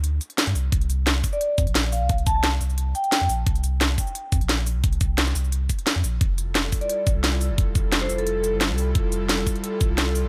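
A warm, round sub bass sits up front beneath a crisp, cracking drum kit and knocking electronic kick in this lush, dreamy liquid drum and bass excerpt, where a metallic, ringing vibraphone with digital delay surfaces at 1.3 and 6.8 seconds, the kick drops out briefly before 6.2 seconds, and an airy, breathy, warbling pad with chorus and sidechain pumping enters at 6.5 seconds on an Fmaj9 chord.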